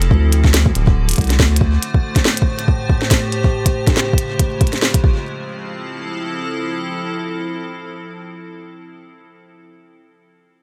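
IDM with a wistful, intricate mood and a light swing, cut from a longer piece, built on an icy, crystalline pad whose sustained chords, slow attack and long release carry chorus and built-in reverb throughout. A round, deep analog bass with tube saturation sits up front but drops away at 1.8 s, while a glitchy drum kit of tiny snare and clicky hats, overdriven and treated with digital delay, runs beside a soft, overdriven electronic kick. The beats stop around 5.1 s, leaving the bright, airy pad alone over a closing move to Fmaj7.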